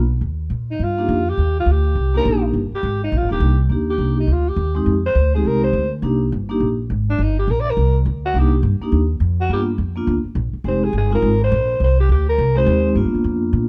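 A dark, dry production frames this cool, smoky slice of small-group swing and bop, cut from a longer piece. Woody, thumpy pizzicato upright bass with gut strings sits up front from the start, while a growling, raspy alto saxophone carries the solo melody from 0.7 seconds with gritty vibrato bathed in plate reverb. Soft-mallet vibraphone enters at 1.0 seconds with mellow, ringing, airy tones and a medium motor vibrato, over chords moving from Cm7 and Fm7 to G7#9.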